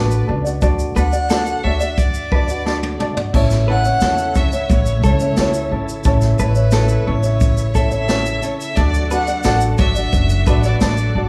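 A lightly reverberant small-room sound frames this heartfelt, sunny acoustic pop excerpt, with a thumpy, woody pizzicato upright bass and a brushed drum kit with dark cymbals and a boomy kick sitting up front. A distant, smooth bowed violin carries the melody with vibrato, plate reverb and tape echo over a light, thumb-plucked ukulele, while a bright, compressed clean electric guitar picks arpeggios with tremolo in the background. After a drum fill at 2.7 s, a full, shouting tonewheel organ enters at 3.3 s with sustained background chords through chorus vibrato and a slow rotary speaker.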